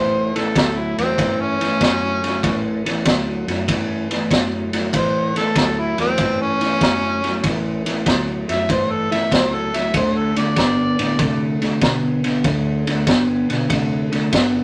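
A swung 96 BPM shuffle in 4/4 drives this gritty, rollicking electric blues excerpt in A mixolydian, where an overdriven, amplified harmonica takes the up-front solo with tongue slaps, scooped notes and light vibrato until 11.6 s, over a slightly broken-up, compressed guitar riff from a small old amp, a dark, foam-muted bass sitting round and punchy in the background, and a saturated garage kit of boomy kick, high-tuned snare and ride cymbal, set in a moderate studio reverb as the A7 harmony shifts to D5 at 9.9 s.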